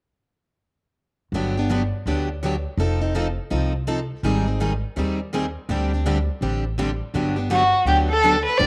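Swinging and playful, this short excerpt of acoustic string swing in the jazz manouche style moves at 165 BPM in G major. Two picked steel-string acoustic guitars share the accompaniment from 1.3 seconds: the plugged-in one bright and up front with fresh strings and audible finger squeak, the other warmer and quieter. Beneath them a woody, thumpy upright bass on gut strings plays pizzicato. A bowed violin enters at 7.5 seconds with a smooth, expressive melody full of vibrato and portamento, and the room carries a wet spring reverb.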